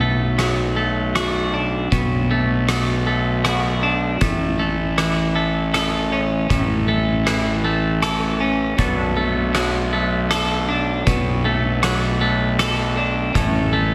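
A bright, twangy twelve-string electric guitar picks clean, compressed arpeggios with slapback echo over an up-front, overdriven fingered fuzz bass and a dark, gritty, oversized low-tuned drum kit of punchy kick, hi-hat and rim click in this brooding, cinematic post-rock cut from a longer piece at 79 BPM in 3/4 and B minor, moving between Bm7 and A, with a very quiet pedal steel guitar joining at 8.8 seconds with sustained slide chords and volume swells, set in light reverb and studio ambience.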